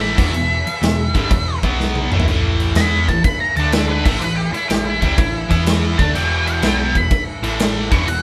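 Driving and raunchy, this short slice of blues rock with a southern rock edge rolls along at 124 BPM in 4/4 with a swung eighth-note feel, tuned slightly sharp to A4 = 445 Hz. An octave-fuzz lead guitar carries a solo throughout, its dark, picked tone pushed through wah and distortion as it ranges from E4 up to C#6. Beneath it, a bright, double-tracked rhythm guitar sits up front with an overdriven riff, while a hollow-body short-scale bass adds a round, punchy low end from E1 to E2. The acoustic drum kit arrives at 0.2 seconds with a boomy kick, medium-tuned snare, crash and toms, and a fill between 1.8 and 2.3 seconds. The harmony moves from Em through power chords on B, A, D and E with a brief Am7, and the trio sounds like a band playing live together in one studio room with moderate reverb.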